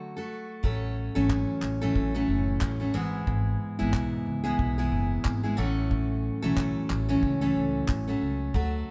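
Set back in a lightly reverberant room, this sunny, heartfelt acoustic pop excerpt in A major moves at 91 BPM with a gentle sixteenth-note swing, as a bright, full-bodied picked steel-string jumbo guitar sits up front from the start, joined at 0.6 seconds by a woody pizzicato upright bass and a dark, smooth drum kit of tight kick and handclaps, over chords moving from D to A6 and E/G#.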